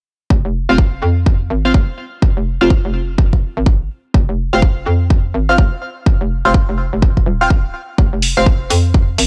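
A hollow, knocking FM bass with overdrive and sidechain pumping drives this bouncy, swaggering bass house excerpt with a 61% sixteenth-note swing, set against a punchy, tape-warm kick from 0.3 seconds, a nasal, band-passed sawtooth chord stab drenched in phaser, lush chorus and delay, and an up-front electronic hi-hat that arrives at 8.2 seconds, all in a digital ambience.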